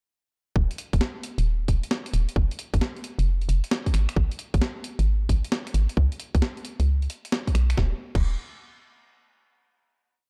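Dry and dark, the production carries a warm tone, with very little reverb around the instruments. This is a short, complete two-step UK garage piece at 133 BPM in 4/4, with a heavy 67% swing on the sixteenths that gives it a soulful, bouncy feel. A hollow, knocking FM bass sits up front from 0.6 seconds, its punchy, fast-attack notes decaying as it skips through a syncopated line between Eb1 and C#2. Alongside it, a tight, layered electronic kick with a tape-warm edge sits up front and plays a two-step pattern, re-recorded in a large room. A gritty, compressed, sampler-style breakbeat kit adds finger snaps, closed hi-hats, a medium-tuned snare and a crash, its swung hats and rims skipping around the groove at a lower level. The groove runs until 7.8 seconds, when the piece settles onto a final note that rings out to 9.6 seconds.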